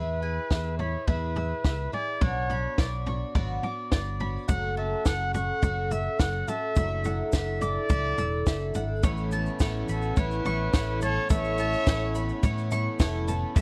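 A trumpet with light vibrato opens this hopeful, anthemic stretch of indie folk together with a shimmering, octave-doubled twelve-string acoustic guitar, a round-toned mandolin playing arpeggios, and a punchy, amped fingered electric bass set up front. At 106 BPM in a straight 4/4 in A major, a compact cocktail drum kit joins at 0.5 seconds with a punchy kick, a high-tuned snare and toms, sounding dry, natural and close. At 4.5 seconds a very quiet, woody upright piano and a grainy tube shaker in the background thicken the arrangement as the chords move from E through Bmadd9 to F#m and Dadd9/F#. The build continues when the harmony lands on Aadd9 at 9.0 seconds, bringing in a reedy, breathing harmonium holding sustained chords. At 9.9 seconds a single bowed fiddle with a focused, smooth top adds a second line alongside the classical-style trumpet until both stop at 12.4 seconds. A bright, brilliant upright piano fill carries the passage onward in a dry, close studio sound with a 1970s character, as the excerpt is cut from a longer piece.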